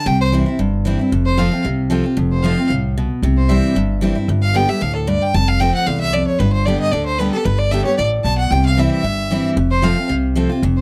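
A clear, focused fiddle carries the melody up front, played by one bowed player with light vibrato across a range from A4 to A5. This short bluegrass excerpt, cut from a longer piece, moves at a brisk 227 BPM in straight 4/4 with a joyful, virtuosic mood. A bright, full-bodied dreadnought acoustic guitar, picked and also up front, supplies the accompaniment, with audible finger squeak on its steel strings. Beneath them, a pizzicato upright bass with a woody, dark, thumpy tone joins at 0.1 seconds and holds down the low end. The chords move among C, F and G. The sound is that of a dry, close 1970s-style studio recording with light reverb.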